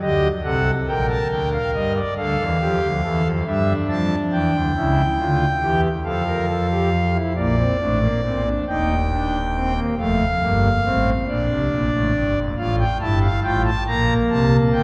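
A long, church-like reverb surrounds a pipe organ on its foundation stops, set up front with a thick, romantic voicing that reaches from deep bass notes to a high upper register. This joyful, elegant baroque-style three-part fugue moves in 6/8 with a straight feel, played solo by the organ throughout. The music shifts into a new section at 7.4 s, where the harmony settles into B-flat major, and the recording is cut from a longer piece.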